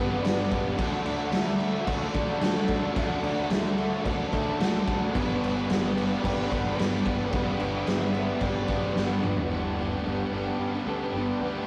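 Dreamy and wistful, this shoegaze and dream pop rock excerpt layers a dark, smooth overdriven lead guitar melody, a faint warbling string machine of violas, clean fingered semi-hollow guitar arpeggios, and riffs from a compressed overdriven guitar, a hollow-bodied overdriven semi-hollow guitar and a bright, double-tracked tight distorted guitar over a punchy fuzz bass and a gritty, up-front garage drum kit whose fill at 9.0 seconds leads into a Gadd9 chord, all set in a rough rehearsal-room ambience.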